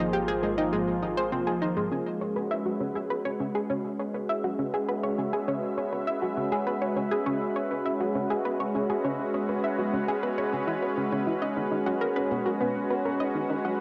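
Hypnotic and expansive, this is a fragment of ambient, sequencer-driven space music in C# minor, moving at 101 BPM in a straight 4/4. A lush, thick unison pad of detuned sawtooth and square waves holds sustained chords throughout, slow to bloom and long to fade, while an up-front analog pluck with a sub octave and filter sweep carries a bright, snappy riff colored by tape echo. Both share a chorus sheen and the grain of cassette tape. A deep, round analog bass with tube saturation sounds only on the opening Ab chord, then drops out at 1.9 s as the music settles onto C# minor and a gentle, dark pluck begins faint arpeggios. The harmony shifts to B at 11.4 s, and the whole homemade cassette recording sits in a wet spring reverb with a 2.7-second tail.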